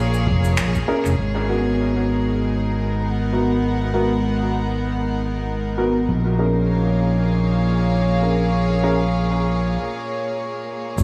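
Moderate concert-hall reverb over small-room ambience gives this ambient dub a deep, hazy air at 98 BPM in G# dorian, swung on the sixteenths. A rich, earthy chamber string section holds bowed chords with light vibrato and a smooth top, sitting up front beside a punchy, amped, overdriven fingered electric bass, while a dark, woody upright piano enters at 0.9 seconds with mellow stabs carrying dub echo and a filter sweep. Overdriven electronic cabasa, finger snaps and a soft electronic kick, re-recorded in a small room, appear only briefly near the start around a band accent, with the cabasa and snaps low-passed and soaked in dub echo, then return at 11.0 seconds as a break ends.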